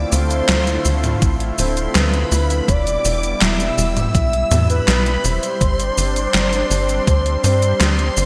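Nostalgic and cinematic, this short synthwave excerpt moves at 82 BPM in E phrygian, with a soft, round octave-layered synth lead carrying the melody through chorus, phaser and delay while a shimmering string machine of violins adds a high second line with tape coloring. Beneath them a lush, detuned unison pad holds sustained chords with sidechain pumping, and a tight, punchy sequencer bass with a plucky filter drives the low end over the changes from Dm7 to Em to Gsus4. A gated 80s digital drum machine with overdriven handclaps, hi-hat, shaker, snare and toms sits up front from 0.1 seconds, joined by a thumpy electronic kick from 1.2 to 7.2 seconds, all set in a moderate hall reverb with bright 1980s-style digital production.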